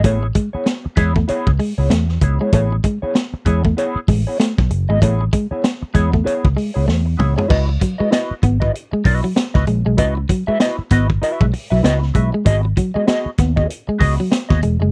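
A crunchy breakbeat drum kit sits up front with a high-tuned snare, tight kick and gritty, saturated tone, alongside a dark, round, foam-muted picked bass in this sly, cool funk cut at 97 BPM in C# minor, swung on the 16ths. A clean, mellow electric guitar adds dark, fingered accompaniment through a wah, while a twangy guitar at the edge of break-up plays a low riff. A drum fill at 6.9 seconds leads from Amaj9 into a second section on C#m11 and then G#m7, all captured in a dry, close 1970s-style studio sound.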